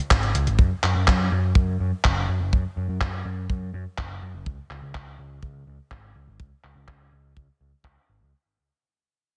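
Picked electric bass, drum machine and kick drum all start together at 0.1 s in this danceable, melodramatic italo disco clip, cut from a longer piece and moving at a straight 124 BPM in 4/4. The overdriven bass is bright, amped, growly and punchy, ranging from F#1 to F#2 with a digital delay trailing its notes. The gated 80s digital drum machine brings sampler-style handclaps and hi-hat, overdriven and treated with gated reverb, re-recorded in a small room and darkened by low-pass filtering, with a filter sweep running across the drums for the whole passage. Alongside it, a tight acoustic kick sounds dry and is the loudest part, while all three parts sit up front in a close mix with little reverb overall. The whole clip fades out from start to finish, with the drums ending at 7.9 s and the bass at 8.3 s.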